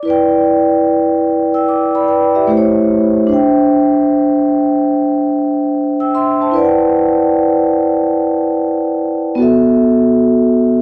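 A dark, hazy production with a moderate plate reverb frames this short, nostalgic hip hop fragment, cut from a longer piece, at 74 BPM in E minor with a lazy 16th-note swing. A solo vibraphone played with soft mallets, motor off, sits up front for the full 10.8 seconds, its metallic, ringing tone made mellow and tinged with cassette tape grain. It moves through Em7, A7, D9sus4 and back to Em7 before settling on B7sus4.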